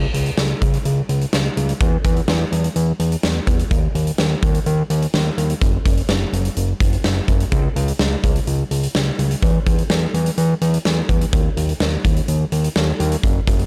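Wistful and nostalgic, this brief synth-pop fragment from a longer piece sets a fat, detuned analog bass of sawtooth and square tones with a nasal, evolving edge against a huge, natural-sounding arena drum kit of punchy kick, medium-tuned snare and hi-hat, both parts up front in a dry, gritty hardware recording with transformer saturation.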